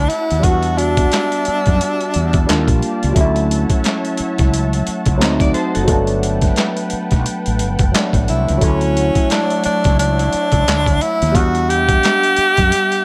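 A boom bap drum kit sets a relaxed, swung groove at 88 BPM in 4/4, its thumpy kick, high-tuned snare, hi-hat and handclaps sounding gritty, compressed, pitched down and overdriven up front in the mix. This smooth R&B and neo-soul excerpt in D major, tuned slightly below standard pitch, rests on a round, dark fretless bass and a bright, barky tine electric piano that is lightly overdriven through a combo amp with a phaser. A vintage analog pad built from detuned sawtooth tones sits softly underneath, sustaining chords with a slow attack and a warbling chorus. A breathy tenor saxophone plays the jazz-style solo melody up front with vibrato and scooped notes, drops out at 2.8 seconds, and returns at 8.3 seconds. In between, a clean, picked electric guitar with analog chorus adds a short second line at 5.2 seconds, over a close, dry sound and lush harmony moving through chords such as Em9, Dmaj9, D7b9 and Gmaj7.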